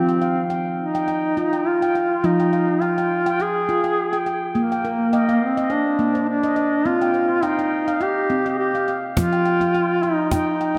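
A lightly swung 4/4 groove carries this meditative, hypnotic world excerpt. A warm, vibrato-laden duduk sings a soft-attacked, folk-style melody up front, over ringing stainless-steel handpan arpeggios touched with soft fingertips, both trailed by analog delay throughout, and a snappy, close cajon with snares and its own delay joins them at 9.2 s, all set in a wet spring reverb and echo-heavy small-room ambience.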